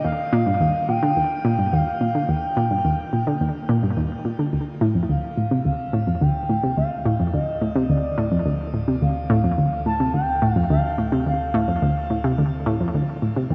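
Cosmic and expansive, this excerpt of sequencer-driven ambient space music moves at 107 BPM in D phrygian, with a bright, nasal, wave-folded analog pluck riff sitting up front in the low register while a smooth, dark synth lead with vibrato carries the melody higher up, both treated with chorus, shimmer reverb and delay. The opening 4.5 seconds rest on an Ebadd9 chord before the harmony shifts to D minor, where a deep, round sine sub bass fades in from the background and holds a low D. A lush hall reverb bathes the recording in a wet, spacious glow.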